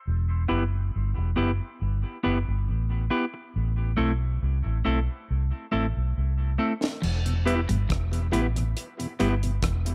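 This dub reggae excerpt moves at a slow 69 BPM in straight 4/4 and E minor, with a heavy, hypnotic mood, shifting from Em to Am and back to Em. A vintage muted fingered electric bass sits up front from the start, foam-muted and round, carrying the low end in a small room ambience. A clean, picked electric guitar plays accompaniment over it, its warm tone filtered and trailed by dub echo. A deep reggae drum kit enters at 6.8 seconds, dry with a high-tuned snare and a tight kick, alongside hi-hat, rim click and crash cymbal. At 7.0 seconds a second, very quiet electric guitar adds a compressed, scooped riff in the low register, and at 7.3 seconds a mellow tonewheel organ joins with key click, slow rotary speaker and its own dub echo.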